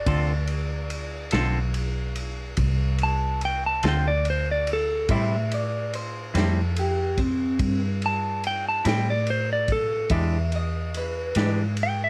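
Soulful and brooding, this slow blues excerpt in A minor moves at 48 BPM in 12/8, with an up-front, slightly broken-up electric slide guitar carrying the melody over a round, foam-muted vintage electric bass, a bright, clean semi-hollow electric guitar accompanying with tremolo, a muffled, lo-fi vintage drum kit of tight kick, snare and dark ride cymbal, and, from 5.1 seconds, a picked second line on an electric guitar through a small old amp, set in light reverb as the chords move from Dm7 to Am7 and then E7#9.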